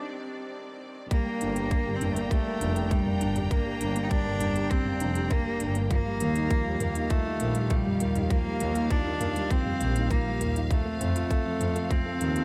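A felt-muted upright piano opens this melancholic, hypnotic piece of piano and strings electronica, its dark, intimate riff carrying audible action noise and a digital delay, while a distant, lush string section holds sustained chords that pump against the beat. After a brief break and build-up over a Cmadd9 chord, the drop lands at 1.1 seconds on a Gm chord, the piece sitting in G minor at a straight 100 BPM in 4/4. Here a close, earthy cello takes the melody with light vibrato and an airy bow, also touched by delay. A tight, overdriven electronic kick sits up front, joined by a drum kit with crisp hi-hats and toms that share the same overdrive and small-room character. From 1.4 seconds a bright, intense bowed double bass section fills the low end, pumping and filtered. The harmony moves through Gm, Ebadd9 and F under light room reverb, and the recording is cut from a longer piece.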